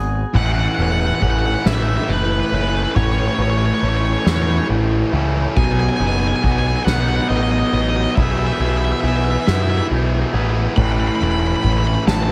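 A growling, punchy overdriven bass opens this cinematic, soaring post-rock excerpt in a slow 6/8, joined at 0.3 seconds by a double-tracked, compressed fuzz guitar riff up front and a soft-mallet drum kit with dark cymbals and a boomy kick sitting in the background, while a bright, cranked stack guitar carries the high melody through analog delay over a small room's reverb as the harmony moves from A to B and Eadd9/B before returning to A at 10.8 seconds.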